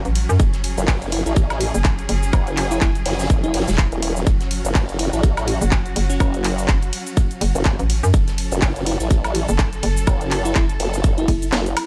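A swung 16th-note groove at 124 BPM in 4/4 drives this bouncy, aggressive bass house excerpt in F# minor, built on a tight, up-front electronic kick with small room ambience. A layered garage kit adds a cracking snare, handclaps, hi-hat, ride cymbal, cabasa and woodblock, while a very quiet acoustic studio kit contributes extra hi-hat and a medium-tuned snare. Two basses sit up front: a hollow, knocking FM bass with a punchy, decaying attack, and a detuned, wobbling formant-sweep bass with chorus and tube saturation, both pumping through sidechain compression. Meanwhile, a rich bowed string section holds sustained chords with vibrato and a soft attack, and from 1.1 seconds a sparkling, bell-like FM electric piano plays a melody in the background, coloured by chorus, cassette tape character and delay. At 11.5 seconds the kick drops out for a closing drum fill.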